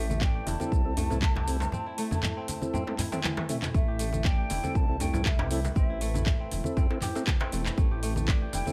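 Opening on a hollow, distant concert flute over an ethereal pad, bright, ringing kora arpeggios and a dark rumbling detuned saw bass, this warm, driving afro house excerpt soon gathers a punchy up-front kick, metallic-hatted house drums with claps, shaker and toms, low-tuned congas and a deep djembe in the background, plus lightly overdriven tonewheel organ stabs turning through a slow rotary speaker, with a break from 1.7 to 3.7 s capped by a drum fill.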